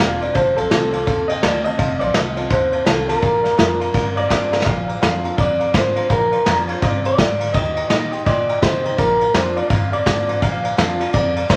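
A swung feel in four drives this rowdy, retro rockabilly passage, cut from a longer piece. The brush drum kit enters at 0.2 s, sitting up front with a dark, smooth sound, a tight kick and a medium-tuned snare alongside the ride cymbal, and it plays a fill at 4.5 s just before a new section begins at 4.7 s. The lead comes from a fingered electric guitar through a small old amp, twangy, compressed and slightly broken-up. A pizzicato upright bass with gut strings gives a woody, thumpy low end. In the background, a bright, full-bodied jumbo steel-string acoustic guitar is picked with audible finger squeak, while a clear, intimate upright piano with short sustain adds accompaniment over its own action noise. Moderate large-studio reverb and vinyl crackle give the recording an old-record patina.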